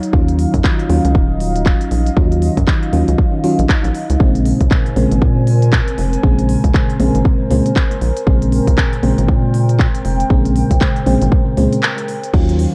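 A punchy, up-front electronic kick drives this short deep house excerpt at 118 BPM in 4/4, with a 60% swing on the sixteenths and a warm, deep mood. Beneath it, a rubbery, hollow square bass bounces through a dark register, while a mellow FM electric piano adds round, soft stabs colored by chorus and analog delay, both pumping against the kick. A warbly, tape-like pad holds nostalgic, detuned chords in the background, smeared with chorus, phaser and its own reverb, and roughened with 12-bit sampler grit. A house drum kit supplies crisp hats, handclaps and crash cymbal, carrying that same lo-fi grit. The harmony moves from Ebm9 to Bbm9 at 4.2 seconds, a brief break arrives at 11.8 seconds, and the kick stops at 12.5 seconds inside an echo-heavy mix with light reverb.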